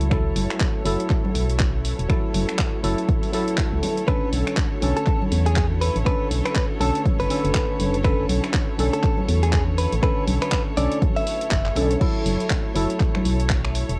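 A home cassette recording with light reverb carries this late-night, smooth deep house excerpt at 121 BPM in F# minor, its 4/4 groove swung on the sixteenths. A punchy, tape-softened electronic kick sits up front beside a hollow, dark FM bass with an organ-like bite, the bass pumping through sidechain. Overdriven layers of hi-hat, handclaps, finger snaps and crash cymbal fill out the drum kit, while ringing congas played with soft hands sit in the background. Mellow, chorused organ stabs pump and echo through tape, over a very quiet, silky string machine holding sustained chords and a close, intense bowed string section adding vibrato texture. From 4.1 s to 11.9 s a bright, clean, direct-recorded electric guitar picks a compressed melody through analog delay as the harmony moves from F#m7 to Bm9, returning to F#m7 at 12.0 s.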